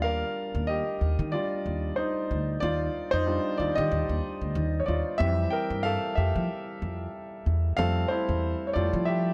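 Lightly reverberant and intimate, this short neo-soul and R&B cut places a concert grand piano with a natural tone and deep low end up front beside a thumpy, woody pizzicato upright bass on steel strings. The piano takes a soulful solo across the whole 9.3 seconds over a gently swung 16th-note feel in 4/4, while the bass supports it throughout. The harmony rests on Ebmaj9 before shifting to Fmaj9 at 5.2 seconds, giving the passage a warm, lush glow.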